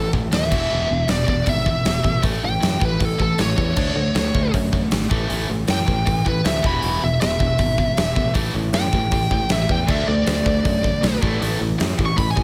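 Swaggering and energetic, this hard rock excerpt at 157 BPM in 4/4 features a smooth, overdriven lead guitar solo with tape echo up front, soaring over a tight, bright distorted guitar riff, a growly picked electric bass, and a huge arena drum kit with a fat snare, punchy kick and bright cymbals ringing in a hall, while a very quiet, warm semi-hollow guitar slips in at 9.9 s as the chords move through A5, E, A, D and back to A5, all set in a small room ambience.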